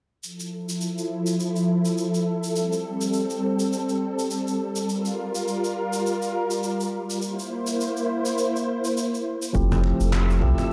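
Relaxed and wistful, this sunset chillout excerpt moves at 103 BPM in 4/4 with a light 16th-note swing, as a silky, vintage string machine with ensemble chorus holds sustained chords over Fmaj7, Am7, Gm7 and C7, joined throughout by dark, rolled-off shaker and handclaps. At 9.5 seconds the harmony returns to Fmaj7 and the texture fills out: a barky tine electric piano enters under a filter sweep, along with a punchy, very quiet electronic kick, a round sine sub bass that sits up front, and distant, ringing congas. A lush hall reverb adds depth to the whole.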